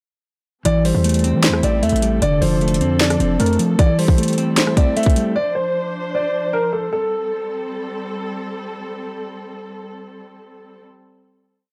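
Hip hop in a trap vein, this brief, brooding piece moves with a half-time feel through a hook before settling on a held final chord at 6.9 seconds. A dark baby grand piano carries a looping melody with long sustain and tape echo, its vintage, mellow tone set against a clean, compressed electric guitar playing a rising and falling eighth-note arpeggio, repeated like a sampled loop. Beneath them, a muted string section bowed con sordino holds a lush, veiled pad with vibrato that lasts until 10.8 seconds. Up front, the trap kit hits hard, with a hard-clipped kick, a sharp snare layered with handclaps, rim clicks and metallic hi-hats breaking into fast rolls. A punchy 808-style bass drops long sub-bass notes with pitch slides before stopping at 3.6 seconds. The sound is dry and gritty, with little reverb.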